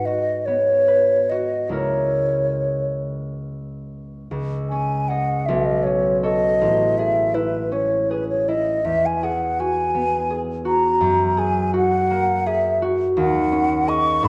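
A hollow, pure-toned concert flute sings the melody with gentle vibrato and a soft attack over a ringing, fingerpicked concert harp in this hazy, wistful impressionist classical duo, which flows in a rubato 6/8 through lush chords such as Amaj7 and F#9, bathed in a wet recital hall reverb and the warbly pitch drift of worn old cassette tape, cut from a longer piece.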